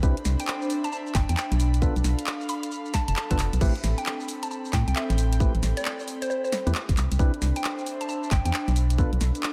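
Late-night and soulful, this short cut of two-step UK garage rolls along with a swung sixteenth-note feel in 4/4. A tight electronic kick anchors the groove alongside a garage kit of hi-hat, shaker, handclaps, crash cymbal and a cracking snare, while an organ-like FM bass sits dark and up front with a sidechain pump. Percussive organ stabs with a chorused, tape-echoed shimmer punctuate the chords, and an airy, breathy pad spreads a soft, full-bodied bed underneath, also sidechain-pumped. From 0.4 seconds a bouncy square-wave pluck carries the melody in a mellow, hollow voice, its chorus and tape echo trailing each note. The harmony drifts between Am9 and Bm7b5, and a lush hall reverb soaks the mix in a dreamy haze.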